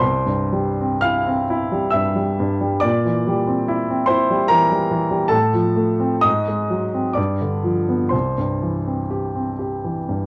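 A clear, polished baby grand piano sits up front in this short solo passage, a tender, nostalgic romantic nocturne in C major and 3/4 that drifts with rubato between 54 and 76 BPM. Its chords move from C through C7/Bb, F/A and Ab7 to G7 before settling back on C at 8.1 seconds, with the piano ranging from C2 to F6. A moderate studio reverb surrounds it, and the worn, warbly pitch drift of old cassette tape lends the fragment a faded, keepsake quality.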